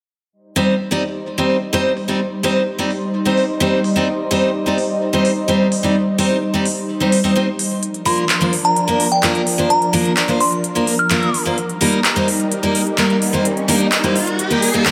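A moderate scoring-stage reverb with a 2.0-second tail spreads a spacious sheen over this anthemic, euphoric festival progressive house excerpt, cut from a longer piece and moving at 128 BPM in a straight 4/4 in C minor. A bright, full-bodied jumbo steel-string acoustic guitar sits up front, picked with fresh strings and audible finger squeak, its accompaniment trailing tape echo. A crisp, layered electronic pop kit of handclaps and hi-hats drives alongside it, with low-pass filtering on the hats and snare and a touch of small-room ambience. Beneath them, a lush, thick unison pad of detuned sawtooth and square waves holds slow-attack chords through Cm, Bb and Eb, coloured by chorus and phaser. At 8.1 seconds a glassy, crystalline vintage FM bell carries the melody high above, warbling with chorus, tremolo and tape echo on its fast-attack, decaying notes, and from 12.1 seconds an electronic riser builds toward the cut.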